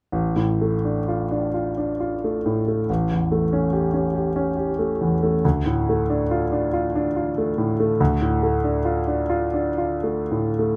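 A clear grand piano opens at 0.1 seconds, playing alone as a romantic classical nocturne in D minor. The mood is mournful and wistful, moving in a slow 3/4 between 52 and 72 BPM with a free, rubato feel. The harmony moves from D minor over A to A7 at 2.9 seconds, then settles back on D minor at 5.4 seconds, with the part spanning from A1 up to G4. The piano sits up front and sounds natural and intimate, with the mechanical noise of its action audible. A light reverb gives the room a gentle sense of space, and this brief fragment of a longer piece ends at 10.8 seconds.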